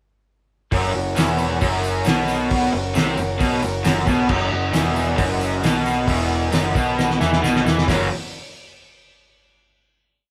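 A straight 4/4 garage rock groove at 134 BPM in F# mixolydian drives this short, raw and swaggering piece, with the band playing live in one room under light reverb from 0.7 seconds. An overdriven, double-tracked garage guitar leads with an up-front single-note riff, doubled by a punchy fuzz bass in quarter notes, while a muffled, cloth-damped drum kit with a fat snare and dark cymbals thuds up front in the mix. A reedy combo organ holds triad chords with light vibrato in the background, a jingly tambourine joins at 1.2 seconds, and a drum fill at 7.0 seconds leads into a final chord that rings to 9.7 seconds.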